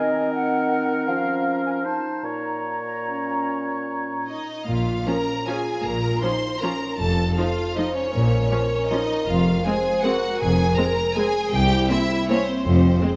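In a rubato 3/4, this dark, bittersweet orchestral ballroom waltz opens with woodwinds alone, a pure flute ensemble, distant oboe, soft-edged clarinet and up-front bassoon, before the strings take over at 4.3 seconds, with a smooth, vibrato-laden violin section carrying the melody over a lush second violin line, focused violas, cellos and intense double basses, while a tight French horn section sustains mellow chords, all set in a wet concert hall reverb.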